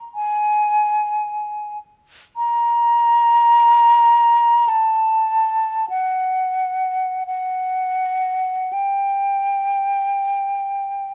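A mellow, hollow silver concert flute sings alone and up front from 0.1 to 11.1 seconds in this mournful, yearning classical fragment cut from a longer piece, its airy vibrato and tongued notes moving freely in rubato at 41-54 BPM in 4/4 within a narrow range from F#5 to Bb5, tuned to A4 = 442 Hz and framed by a moderate stone-room reverb.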